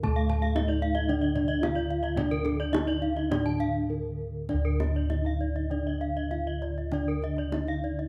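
This Balinese gamelan passage, cut from a longer piece, has a shimmering, brilliant mood over a straight pulse. The bossed gongs sit up front in the low register, their round, dark tones struck with padded beaters. Above them, a bronze metallophone carries the melody with padded disc mallets, giving a mellow, soft and airy ring, while a lower metallophone played with a horn mallet supplies a smooth, shadowy accompaniment. Two higher metallophones spin arpeggios, one struck with a wooden mallet and the other, entering at 0.2 seconds, struck with a horn mallet for a bright edge. Every metallophone is tuned in pairs, so their bronze tones pulse with shimmering beats, and the kendang adds tight, vintage, band-limited drumming with soft hands. A break from 3.6 to 4.5 seconds divides two sections, and the close, detailed recording carries a light reverb.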